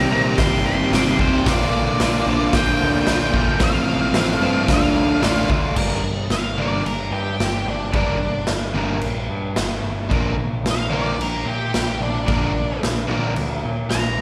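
A double-tracked overdriven guitar riff, a growling overdriven bass and a dark octave-fuzz lead guitar with slapback echo open this menacing, raw garage rock fragment, joined at 0.4 seconds by a punchy, saturated drum kit pumping in a bright stone room, before the lead breaks into a distorted solo at 5.8 seconds over a Gm-to-Bb change, all heard as a live gig through the venue's PA.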